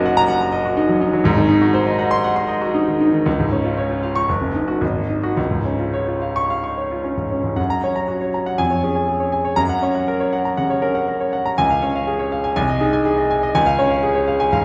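A solo grand piano opens this sparkling, brilliant virtuoso study in D-flat major, played with free rubato in 4/4 at a tempo that moves between 104 and 126 BPM and ranging from deep bass to bright upper register. The tone is intimate and natural, with the instrument's action noise audible, set within a recital hall's lush reverberation heard from further back in the room. At 7.6 seconds the harmony shifts to F-sharp major for the second section, and the piano plays through to the end of this portion of a longer piece at 14.6 seconds.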